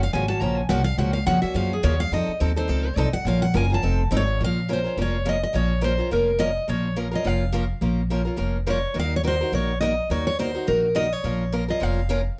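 A fiery, virtuosic stretch of jazz manouche in Bb minor opens with a dreadnought steel-string guitar taking a picked solo up front for the first 4.4 seconds, over a boxy parlour guitar's accompaniment and a woody, thumpy pizzicato upright bass with gut strings, all at a racing, swung 210 BPM. The lead guitar carries the melody high while the bass sits dark and close, moving through Gbmaj7, F7 and F7#9 before settling on Bbm and touching Ebm around 9.0 seconds. Light reverb surrounds this excerpt, which is cut from a longer piece.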